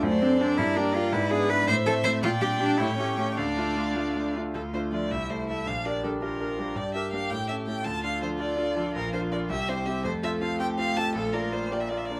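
A smooth, vibrato-rich violin carries the melody up front in this cheerful, graceful excerpt from a quick classical-period piano quartet movement in 6/8 at 109 BPM, played with rubato, moving from D minor to F major at 8.9 s, while a second violin adds an expressive line with portamento, a close, intimate cello plays sul tasto with an airy bow, and a brilliant concert grand supplies present, deep-bass accompaniment with long sustain under light reverb.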